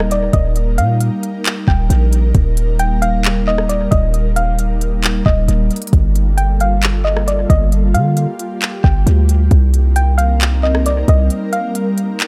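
A deep, boomy 808-style bass sits up front in this floating, blissful slice of atmospheric cloud-rap, its sine tone carrying a noise layer and a fast attack that decays under each note. A smooth R&B drum kit rides a half-time feel, with a soft kick, smooth hi-hats, handclaps and rim clicks, all touched by tape echo. Behind them, an ethereal, airy pad holds sustained chords with a slow attack and long release, its detuned unison voices thickened by ensemble chorus and reverb and pumping against the beat. A soft, round pluck carries the high melody in a dark, gentle tone, its chorus and tape echo adding to the echo-heavy digital ambience of the mix. The harmony moves from Eb to Gm9 and then Cm7, and the bass drops out at 11.3 seconds for a brief break while the pluck lingers a moment longer and the pad and drums carry on to the end of this cut from a longer piece.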